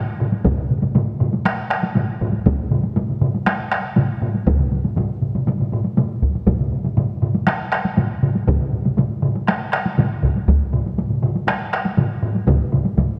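Powerful and ceremonial, this Japanese traditional taiko ensemble excerpt runs in a straight 4/4, cut from a longer piece, with a solo taiko drum and three taiko ensemble parts all sounding from the opening moments to about 13.1 seconds. The solo drum is struck with heavy sticks and has a vintage, band-limited character up front. Among the ensemble parts, one uses hard sticks and sits close and up front, another uses heavy sticks in a small-room sound, and a third, also with heavy sticks, is close, dry and up front. The whole is placed on a dark production within a reverberant scoring stage with a 1.9-second decay.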